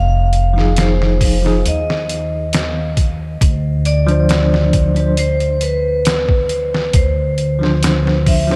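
A ringing vibraphone struck with hard mallets carries the brooding, cinematic melody through gritty 12-bit sampler texture and dub echo, over a woody, dark pizzicato upright bass up front, a compressed, pitched-down, tape-warm sampler-style trip hop kit with thumpy kick and medium-tuned snare entering at 0.3 s, and a bell-like, clean tine electric piano with tremolo and tape echo arriving at 0.5 s, all moving from Fm7 to Dm7 at 3.4 s in a dreamy mix drenched in plate reverb.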